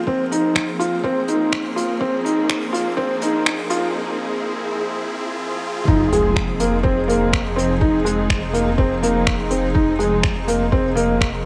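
Piano and strings electronica with a moving, melancholic mood, heard in a short cut from a longer piece. A soft, felt-muted upright piano sits up front, playing a mellow, intimate riff with audible action noise and a tape echo, over dark, distant symphonic strings holding bowed, vibrato-rich chords that pump against the beat. A muffled, thumpy electronic kick with overdrive and a brushed jazz kit with finger snaps and hi-hat, thinned by high-pass filtering, carry the rhythm from the opening moments. An electronic riser and sub drop build in the background from 1.3 seconds, through a break, into a drop at 5.9 seconds, where a deep, rumbling detuned saw bass enters and pumps alongside the strings. A huge ambient reverb gives the whole piece a lush, spacious sense of distance.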